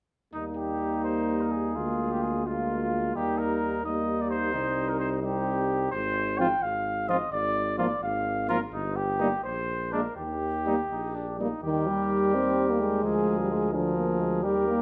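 In 6/8, this noble classical brass quintet passage, cut from a longer piece, sets an up-front, mellow trumpet melody over a clear flugelhorn second line, a warm French horn with light vibrato, a vintage-toned euphonium in the background and a distant, roomy bass trombone holding the bass, all five playing together throughout in a moderate recital hall reverb.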